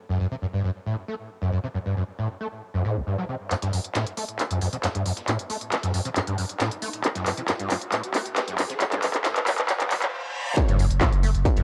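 Driving peak-time techno at 136 BPM in F# locrian, this intense excerpt opens with a squelchy, screaming acid riff of sawtooth grit, chorus, delay and pumping, which runs alone until overdriven techno claps and hats and a background layer of gritty sampler-style hat, snare and tambourine enter at 3.5 seconds. A build-up follows, with a drum fill, a filter sweep on the acid line, and an electronic riser and reverse cymbal behind, then a brief stop gives way at 10.6 seconds to a drop where a distorted kick and a deep, thick saturated sub bass on F# land up front. The whole has a light reverb and a hazy home-cassette character.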